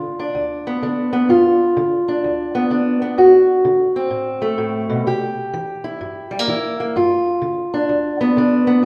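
A fingerpicked steel-string acoustic guitar opens this short blues fragment, cut from a longer piece, and plays solo for the whole 8.8 seconds. Its parlour-guitar tone is dark, woody and boxy, with the dulled character of old strings, and it sits up front in the mix. The tempo is 127 BPM in 4/4 with a swung eighth-note feel, giving the music a soulful, swaggering mood in G mixolydian. The harmony moves from G7 to D7 at 3.2 seconds, then to C7 and back to G7. A wet recital-hall reverb with a 1.6-second tail surrounds the guitar.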